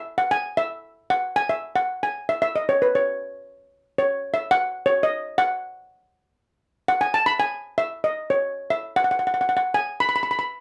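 A straight, bouncy 4/4 calypso feel drives this carefree fragment of a longer piece, where a double seconds steel pan, played with hard rubber sticks, carries the solo from 0.0 to 10.5 seconds between B4 and B5, its bright, shimmering, metallic tone sitting up front with light reverb in a dry, close 1970s-style studio sound before a new section begins at 8.7 seconds.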